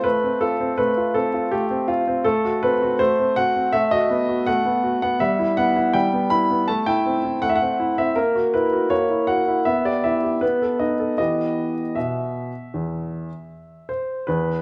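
A solo baby grand piano opens this short fragment of a classical-period sonatina, its tone clear and intimate and placed up front, with the clicks of the action audible beneath the notes. The mood is serious and elegant, in a steady, straight common-time pulse. The writing spans from the low bass up into the upper treble, moving through a sequence of chromatic, inverted harmonies before a dominant seventh arrives at 10.4 seconds and resolves to the home minor chord at 11.2 seconds. Each note carries a long, natural sustain that blooms into the reverberant recital-hall space. The production is dark and warm, and the piano plays on until 14.6 seconds.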